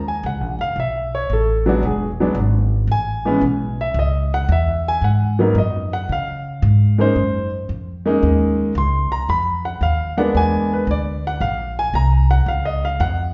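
A smooth, vintage-toned grand piano carries the accompaniment in this playful, relaxed small-group swing and bop fragment at 113 BPM in 4/4, with a lilting swing feel on the eighth notes. Beside it, a woody pizzicato upright bass on steel strings holds down the low end, both instruments sitting up front throughout the full 13.3 seconds as the harmony glides from Gbmaj7 through Amaj9, Db69 and E7#11 to a closing Bbmadd9. A wet, large studio reverb sets the pair further back in the room, with a mellow, rounded top end.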